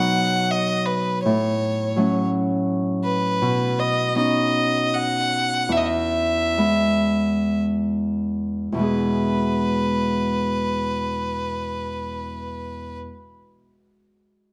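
Tender and pastoral, this Celtic slow air in E major moves in a rubato 3/4 between 50 and 85 BPM, easing into a gradual slowdown from 3.4 to 8.8 seconds before a second section begins. A single bowed fiddle sings the melody up front with a rich, smooth tone and light vibrato, while a fingerpicked Celtic harp rings out bright, low-reaching chords beneath it, moving from B through A6 and Badd9 to E. A moderate recital-hall reverb and a dark production surround both parts in this short passage cut from a longer piece.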